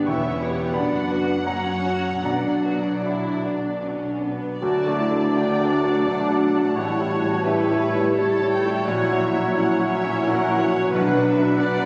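In a rubato 3/4 that drifts between 73 and 93 BPM, this romantic movement for piano and orchestra, cut from a longer piece, feels passionate and tragic, opening in B minor before turning to D major at 4.6 s. An up-front baby grand piano carries the melody with a natural, short-sustained tone, joined on the melody by a veiled symphonic violin section muted con sordino in the background. Chamber violins add a dark second line, while chamber violas supply a close, soft-attacked accompaniment, and muted double basses and very quiet, lush cellos hold the bass. Soft-mallet timpani with round calf heads enter very quietly at 2.2 s on B2. From 4.6 s the winds and brass join: a pure flute section and an oboe with light vibrato in the background, a clear solo clarinet, a mellow bassoon, a warm French horn section sustaining chords, and a trumpet adding very quiet stabs. The whole sits in a moderate concert hall reverb, captured by a phone in the room, with chords moving from D through A7 and F#7/A# back to B minor.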